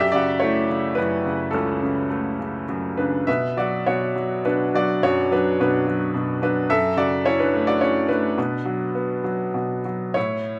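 Bittersweet and cool, this short excerpt cut from a longer classical piece features a lyrical solo upright piano in B minor, played with rubato in 3/4 at around 98-109 BPM, its brilliant, woody tone sitting up front with long sustain and audible action noise, moving from F#m7 to Bmadd9 and back before settling on Bm at 8.4 seconds, captured by close, detailed microphones in light reverb.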